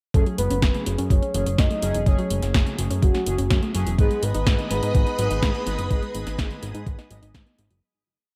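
Nostalgic and bittersweet, this short, complete italo disco piece moves at 125 BPM in a straight 4/4, set in F# dorian and tuned slightly below standard pitch. A thumpy, up-front electronic kick holds a four-on-the-floor pulse, while a house drum kit adds closed hi-hats and a punchy snare bathed in gated reverb. Underneath, a fat analog bass with tube saturation drives a sequenced sixteenth-note line. A dark, round octave-layered synth lead carries a motif-based melody with chorus, tremolo, vibrato, cassette tape colour and digital delay. It sits over a gentle, mellow pluck running a 16-step arpeggio with 12-bit sampler grit, and bold, brassy analog synth stabs playing held chords with syncopated pushes. The harmony moves from F#madd9 to G#m at 4.0 seconds, where a lush vintage string machine enters with phaser and ensemble chorus, before the dry, close-sounding mix fades out from 5.3 seconds to its end at 7.8 seconds.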